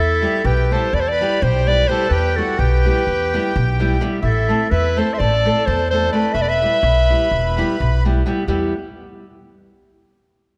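A warm, up-front clarinet carries the melody in classical style through this fiery, restless Balkan folk excerpt in 9/8, driving at 254 BPM in eighths in E minor as the harmony moves from Em to Am and back to Em. A reedy, full accordion plays a second line beneath it, while a boxy, fingerpicked nylon-string guitar accompanies from 0.2 seconds and a thumpy, woody pizzicato upright bass on gut strings sits up front. The clarinet and accordion stop at 8.0 seconds, leaving guitar and bass to carry on until 8.7 seconds, all set in a moderate concert hall reverb.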